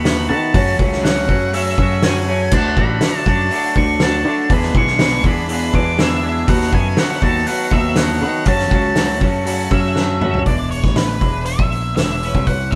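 Carefree yet wistful, this indie rock passage in straight 4/4 sounds like a band playing live together in a stone room with moderate reverb. A fuzzy, distorted octave-fuzz lead guitar carries the melody over two bright, overdriven raw garage guitars picking riffs, a round, direct picked electric bass, and an up-front loose indie drum kit with a punchy kick, fat snare and dark cymbals. A drum fill at 10.0 s leads into a new section at 10.5 s, where the chords move from E7 to A.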